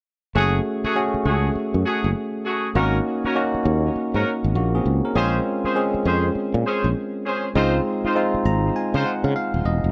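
A barky, bell-like tine electric piano sits up front in this flirty, bouncy R&B excerpt, comping through lush ninth chords with a bright, clean edge and taking a fill from 8.2 seconds to the end. Beneath it, a sustaining fretless electric bass holds the low end with a growly, direct tone, its lines reaching down to Eb1. A tight, vintage-sounding horn section punctuates the groove with jazz-style stabs, colored by a light vibrato and a touch of tape echo, entering at 0.3 seconds and dropping out at 9.1. The swung sixteenth-note feel gives the short passage a playful lilt as the harmony moves from Gbmadd9 through Ab9sus4 and Bbm9 to Dbmaj9. A light studio reverb rounds out the close, polished mix.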